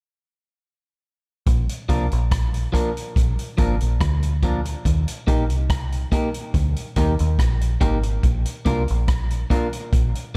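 Round, foam-muted fingered dub bass and a vintage drum kit with a punchy kick, hi-hat and rim click open this sunny roots reggae piece at 1.5 s in a small room, joined at 1.9 s by a slightly broken-up, compressed electric guitar carrying dub echo, all moving over Bb and Eb in a straight 4/4 at 71 BPM.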